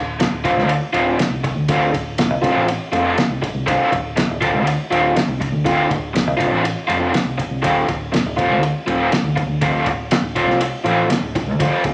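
A raw garage guitar leads this dark, mysterious psychedelic rock excerpt, its overdriven, picked riff double-tracked and up front, shimmering through a harmonic tremolo between D3 and F4. Beneath it, a fingered electric bass with a round, foam-muted tone holds the low end from D1 to D2, sounding direct and punchy from the very start before the other parts join at 0.2 seconds. The cloth-damped drum kit is thuddy and muffled, with a fat snare, tight kick and ride cymbal, its gritty, saturated character and rolled-off top giving a lo-fi, small-room feel. The music moves at 121 BPM in a straight 4/4, resting on a single Dm7 chord in D minor with tuning at A4 = 443 Hz. A moderate large studio reverb of 1.3 seconds surrounds the parts, and the clip runs to 11.9 seconds as a cut from a longer piece.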